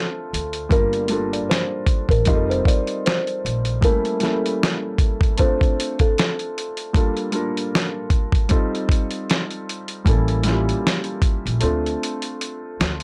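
A gritty, compressed sampler-style drum kit sits up front in this hazy, melancholic lo-fi hip hop clip, its thumpy kick, fat snare and hi-hat carrying a gentle swing before closing on a fill at 11.6 seconds. A soft, intimate felt-muted upright piano with cassette-tape colour plays the accompaniment throughout, while a hollow, ringing, thumb-plucked kalimba carries the melody until 6.9 seconds, both parts softened by low-pass filtering. A woody, dark pizzicato upright bass plays early on and returns at 10.1 seconds beneath rich seventh and ninth chords, all captured in a dry, gritty sound.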